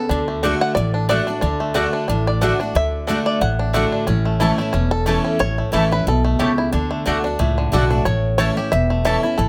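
A twangy, percussive five-string banjo carries the melody through this lively, joyful bluegrass excerpt in D major, moving at a brisk 181 BPM with a light swing. A bright, full-bodied picked acoustic guitar and a woody pizzicato upright bass sit up front beneath it, while a round mandolin adds stabs from 0.4 seconds, all moving between D and A chords. Close, detailed microphones and light reverb keep the sound intimate and clear.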